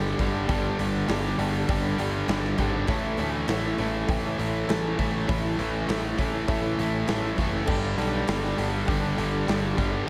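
A fuzzed, overdriven electric bass, round and punchy, anchors this driving, confident classic rock excerpt, joined by a big, smooth rock drum kit with a punchy kick, a medium-tuned snare, hi-hat and crash cymbal. A bright, tight distorted guitar and a compressed, overdriven electric guitar sitting in the background play the riff over a Gsus2 to A progression. Very quietly underneath, a vintage string machine holds warbling, slow-attack cello chords, a woody, boxy upright piano adds accompaniment, and a dark picked steel-string acoustic guitar with audible finger squeak fills in, all in light reverb.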